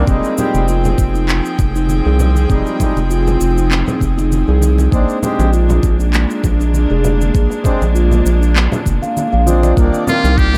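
Meditative and hypnotic, this organic downtempo passage, cut from a longer piece, sets a reedy, breathing harmonium and a rich chamber string section with light vibrato over a round, deep analog bass, all three pumping with sidechain, while the harmonium and a pure, ringing steel tongue drum played with soft rubber mallets in arpeggios trail analog delay. A knocking electronic kick, electronic shaker and handclaps, and very quiet congas in soft hands keep a lightly swung groove under chords moving from Fm7 to Bb7 to Cm7. At 10.1 s, a buzzy, brilliant trumpet with a metal mute arrives up front with scooped notes, all within an echo-heavy mix with light reverb and studio ambience.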